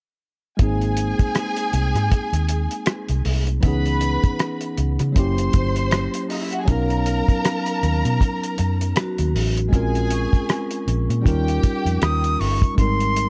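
A dark, warm small-room sound frames this smooth, lush slice of 1970s-style soul in Ab major, moving at a relaxed 79 BPM with a swung sixteenth-note feel. Up front, a cloth-damped, thuddy drum kit with tight kick, hi-hat and rim click sits with a round, foam-muted fingered electric bass, while a clean tine electric piano plays accompaniment and a distant bowed violin section with vibrato carries a second line. A ringing hard-mallet vibraphone glints in the background over chords moving from Abadd9 through Gb7b9 and Bmaj9, and at 12.0 seconds a breathy, reedy concert flute enters close and up front with a crisp attack, just before the violins stop at 12.4 seconds.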